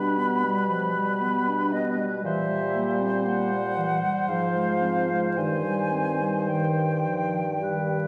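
Heard from further back in a wet recital hall with a 1.4-second reverb and a layer of vinyl crackle, this brief fragment of a slow, romantic classical movement for wind quintet unfolds in C minor and 3/4 at 53-60 BPM with a rubato feel, melancholic and yearning. An airy, up-front silver flute carries the expressive melody with vibrato and a soft attack, while a mellow, distant oboe sings a second line just beneath it. A dark clarinet and a smooth-topped French horn fill in the accompaniment over a warm bassoon bass with light vibrato, as the harmony moves from G7/B through C7/Bb and Fm/Ab to settle on Cm/G.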